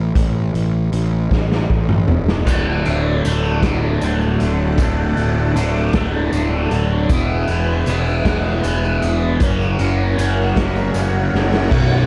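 A mysterious and dark psychedelic rock excerpt moves at a slow 52 BPM in 6/8, where a fuzzy, up-front picked electric bass with overdrive opens alongside a gritty, saturated, punchy garage drum kit in a stone room, whose fill leads at 2.5 seconds into a double-tracked crunchy guitar riff with phaser, lush sawtooth string-machine chords with ensemble chorus in the background, and a jingly tambourine, over chords moving from A5 through D and E to F#7.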